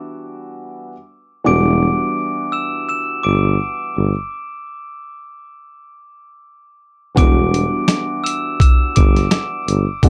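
A dark, boxy concert grand piano with audible action noise opens this reflective, moody boom-bap hip-hop excerpt at 84 BPM in E minor on an Em9 chord, with a cassette-tape tint and plate reverb. A breathy, mellow tuba with vibrato and scooped jazz notes soon joins up front on the bass, alongside a ringing, bell-like glockenspiel struck with hard plastic mallets. The harmony drops out from 4.3 to 7.2 seconds, and when the Em9 returns at 7.2 seconds a gritty, pitched-down, compressed sampler-style drum kit enters up front with a thumpy kick, medium-tuned snare and hi-hat over a swung 16th-note feel, all within a dark production with light reverb.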